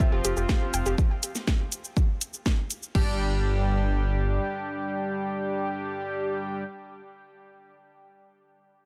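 An edgy, nasal sync-sweep polysynth leads this dark, dramatic melodic techno excerpt, firing chorused, delayed stabs that pump against the sidechain until 6.6 seconds. Beneath it, a punchy, tape-tinged electronic kick and a house drum kit with a cracking snare, hi-hat, shaker and crash cymbal carry the opening drop until 3.0 seconds. A menacing detuned saw bass with a filter swell pumps alongside, and a soft, round pluck traces chorused, delayed arpeggios, all in a dry mix where only the drums hold the air of a large room.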